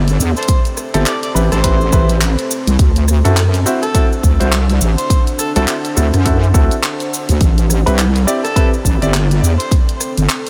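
Gritty and swaggering, this short glitch hop excerpt struts at 104 BPM in 4/4 with a swung sixteenth-note feel, sitting in A dorian over a progression that moves from Am7 to D7 at 2.8 seconds and back to Am7 at 7.4 seconds. A heavy, saturated wobble bass with chorus sits up front from the very start, joined by a punchy, layered electronic kick drum at 0.5 seconds that carries the low end. A produced pop drum kit adds handclaps, hi-hat and rim click in a small room ambience, while a grainy, bright cabasa sits close alongside it. An amplified, overdriven harmonica takes the solo melody with delay, light vibrato, tongue slaps and scooped notes in a jazz style, and a clear baby grand piano punctuates with stabs roughened by vintage 12-bit sampler grit, sidechain pumping and delay. Beneath it all, a very quiet, moody ambient pad with a moving notch and built-in reverb lends a dark sustained bed, and the whole mix carries a light digital reverb.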